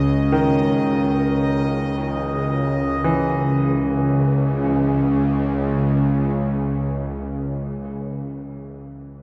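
In a vast, echoing space, a tense, string-like drone with vibrato sits up front while a bubbling, resonant stepped-filter texture with chorus glimmers until 3.1 seconds and a brilliant concert grand piano plays arpeggios through tape echo, forming a cavernous, unsettling dark ambient fragment in which the drone stops at 7.7 seconds and the piano carries on alone until 9.2 seconds.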